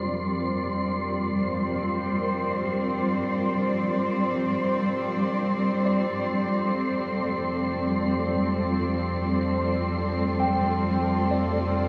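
Ambient music at a slow 66 BPM in F major, with a warm, weightless mood, taken from a longer piece. A granular cloud pad sits up front with blurred, detuned sustained chords that move from Bb69/F to F69 at 5.0 seconds, its slow attack and long release softened by built-in reverb. A mellow tine electric piano plays very quiet arpeggios between G4 and G5, sounding as if heard through built-in speakers, while a round, dark analog bass holds a deep F2 and fades in across the whole span. A bowed-like drone adds a nasal, string-like tension with vibrato, and a breathy, wind-like tuned noise texture hovers around C6 as it fades out. The parts play throughout the 11.9 seconds, set in a lush hall reverb with a long tail over a small room ambience.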